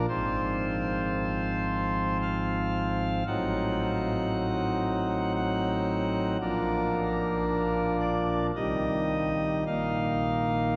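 A cavernous cathedral reverb with a 5.2-second decay surrounds this short cut from a longer classical chorale-style piece, recorded in a church or concert hall. A solo pipe organ sounds throughout its 10.8 seconds, voiced on a nasal cornet stop in a romantic registration and placed up front in the mix. The mood is majestic yet serene, moving at a slow 56 BPM in 3/4, with uneven beats and a rubato feel. The organ spans from Ab1 up to F#5. The harmony opens on Fm/Ab, moves to Adim7 at 3.3 seconds, then to Bb at 6.4 seconds, then passes through Cm before settling on a suspended Bbsus4 as the passage is cut off.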